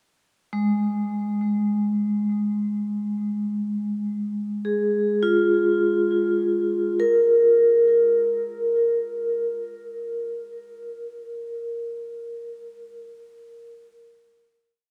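Floating in free time, this short, complete ambient piece features a solo vibraphone struck with medium hard mallets, its metallic, ringing tone shimmering with fast motor vibrato and tape echo as two slow loops of unequal length drift against each other. Sitting up front in a huge, wet reverb with a dark production, the vibraphone plays from 0.5 s to 13.0 s, and the mood stays melancholic yet serene as an F minor chord colours the middle before a final note rings out from 7.0 s.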